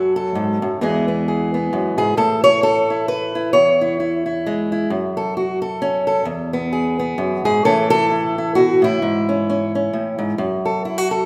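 Bathed in a wet recital-hall reverb with a 1.6-second tail, this hopeful folk excerpt features a lone fingerpicked old ladder-braced acoustic guitar, up front and warm with audible finger squeak, swinging lightly in 3/4 at 132 BPM as it moves through F#m, E, A and C#m and restates its opening section at 7.6 seconds.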